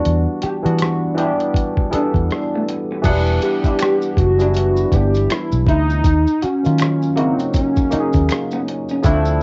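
A barky, lightly overdriven tine electric piano with analog chorus opens this sultry, introspective neo-soul R&B excerpt, joined by a round, foam-muted electric bass, a gritty, dusty sampler-style drum kit with a thumpy kick, rim click, hi-hat and crash, and a twangy, slightly broken-up guitar with lush chorus as a second line, while maracas and finger snaps arrive at 3.0 seconds and a hollow, woody, warbling square lead with phaser and vibrato carries the melody from 3.4 seconds over a gently swung sixteenth-note feel, the Em9 harmony shifting to D#m9, all wrapped in light reverb and a muffled, lo-fi cassette home-recording sound.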